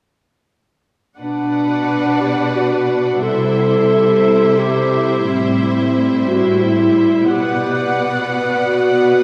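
In a rubato 3/4 at 89 BPM, this sorrowful, bittersweet cinematic excerpt sets a dark, soft-attacked solo clarinet against a distant, vibrato-rich violin section, with an up-front, lush viola section carrying the accompaniment and a clear cello section anchoring the bass, all four parts sounding from 1.2 to 9.2 seconds through Bm, C6, Am7 and back to Bm, bathed in the long reverb of a church or concert hall.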